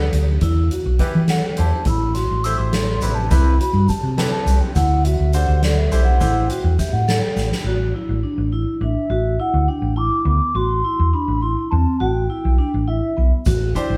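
A progressive instrumental piece in a brisk 5/8 at 207 BPM counted in eighths, this brooding, intricate passage sits in A dorian and is cut from a longer work, with the band playing together in a stone room whose reverb gives it a live, reflective air. A round, dark hollow-body bass sits up front and carries the low end throughout, while a vibraphone played with soft mallets and its motor off rings out mellow, metallic arpeggios across the whole 14 seconds. A bright concert grand piano with deep bass supplies accompaniment in the first half, returning only briefly at 13.8 seconds, and a soft-mallet drum kit with a boomy kick and medium-tuned snare plays hi-hat, kick and snare until a drum fill at 7.4 seconds, reappearing just before the close. A pure, hollow baroque flute with a crisp attack and vibrato carries the melody from 1.0 seconds, sounding distant and woody as it solos through the first section, and a grainy tube shaker murmurs far in the background. 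The harmony moves from Em through Am7, Cmaj7 and D7 before shifting into suspended and A-pedalled chords such as A13sus4 and Em7/A in the second section.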